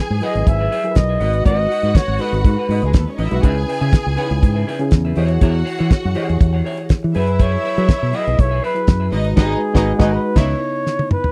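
A breathy, whispered flugelhorn carries the melody up front in this glamorous, sultry disco excerpt at 121 BPM in C# minor, resting from 3.2 to 7.2 seconds while a damped 70s drum kit with a fat snare and tight kick, a round, dark fingered bass, a reedy electric piano, a semi-hollow guitar with lush chorus and a smooth, bowed string section move through chords like F#9sus4 and G#m7 in a dry, close 1970s-style sound, arriving at a band accent at 9.4 seconds and a closing drum fill.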